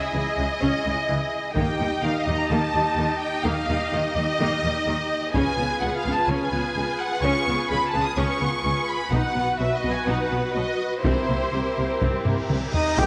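Bathed in a wet scoring-stage reverb, this dramatic, relentless excerpt of an epic orchestral film score sets an expressive, up-front studio violin melody over a focused second violin line, rich violas, a dark, distant cello section and woody double basses, punctuated by hard-stick taiko hits first at 1.6 seconds; a huge cymbal swell and impact arrives at 12.2 seconds, and in the closing moments a close-miked solo trumpet stabs, a pure flute adds a background line, and a clear trombone section and barely audible mellow French horns sustain chords from 13.0 seconds.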